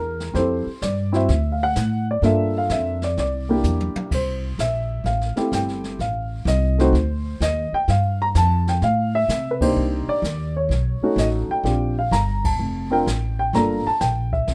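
A rough home demo mix with light reverb frames this sophisticated, warm swing excerpt from a jazz piano trio, moving at 127 BPM in 4/4 in F major. Up front, a dark, mellow, slightly detuned upright piano carries the melody over a pizzicato upright bass with a woody, thumpy tone, while a brushed drum kit with a boomy kick sits further back in a small, natural-sounding room. The harmony drifts from Fmaj9 through Gm7 and C7 into richer colours like G9sus4 and B9, with a drum fill at 3.6 seconds and full-band accents at 9.5 and 12.4 seconds.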